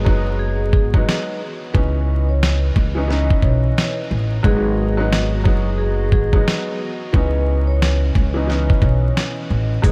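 Boom-bap hip-hop with a dark, gritty mood, this short cut from a longer piece rides a swung sixteenth-note feel over a loop that moves between G#m7 and C#m9. A woody pizzicato upright bass on gut strings plays from the very start, and a compressed, sampler-style drum kit joins at 0.1 seconds, sitting up front with a thumpy kick, fat snare and hi-hat. A clear upright piano supplies short-sustain accompaniment, while a hollow, flute-like pad holds slow-attack chords with chorus in the background. From 0.4 seconds a vibraphone played with soft mallets carries the melody, its ringing metallic tone shaded by slow motor vibrato and analog delay, also set back in the mix. Vinyl crackle and light studio ambience lend the passage a dusty, worn finish.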